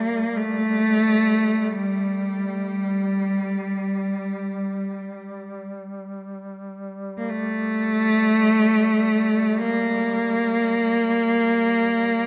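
Longing and mournful, this short passage cut from a longer Caucasian folk lament unfolds in free time in G minor, tuned to A4 = 438 Hz. A single bowed cello carries the melody up front, its tone clear, smooth and even, with vibrato and a slightly distant quality as it moves between G3 and Bb3. Beneath it, a solo duduk holds a warm drone on G3 in folk style, placed well below the cello, with a soft attack, vibrato and scooped notes. Both instruments sound together from the opening through 12.3 seconds, sharing one unbroken section. A moderate cathedral reverb with a long 5.9-second decay surrounds the pair and lends the lament a spacious, mournful air.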